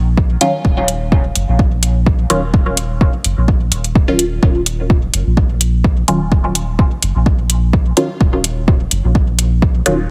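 A round, soft sub bass with tube saturation and sidechain pumping opens this meditative, nocturnal dub techno excerpt. It is soon joined by an overdriven, deep electronic kick drum, then by metallic, distorted hi-hats re-recorded in a large room and muted, nasal, detuned chord stabs shaped by phaser, pumping and dub echo. Light reverb and a heavily compressed, radio-like sound complete the picture.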